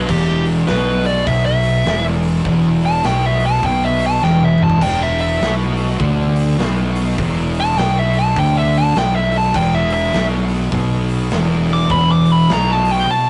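A fuzz-soaked lead guitar sits up front, playing a distorted, dark solo melody across the whole 13.3-second excerpt of this heavy, hypnotic stoner and doom metal piece in E minor, moving at 102 BPM with a swung 4/4 feel. Beneath it, two thick fuzz guitars churn out a low riff, one very quiet and the other distorted in the background, while a round, overdriven fingered bass pushes forward and a big rock drum kit with a punchy kick, medium-tuned snare and bright cymbals drops a fill at 4.2 seconds. The rough rehearsal-room recording carries light reverb and a warm, saturated tone that trims the highest frequencies.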